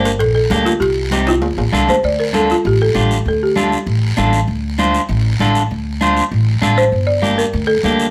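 A dark, woody folk marimba carries the melody over slightly broken-up, picked electric guitar and a growly pizzicato upright bass up front in this driving, fiery cumbia excerpt at 196 BPM, joined by a raspy guiro, with bright, thin-skinned congas and ringing metal-shell timbales in the background; a drum fill runs from 1.3 to 2.0 s as the timbales drop out, and the marimba returns at 6.8 s, all under chords moving from Gmadd9 through Cm and Dm to Gm in a moderate studio reverb.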